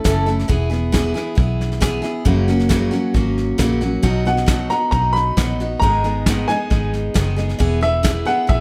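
A clear, woody upright piano carries the melody from 4.3 seconds, sitting intimate and up front with its action noise audible, in this easygoing, heartfelt honky-tonk and classic country passage cut from a longer piece. Beneath it, a bright, full-bodied picked dreadnought acoustic guitar picks the accompaniment through E, F#, B and G#m. A dark, round, foam-muted electric bass and a soft brush kit with a fat snare and punchy kick fill out the groove in a moderate studio reverb.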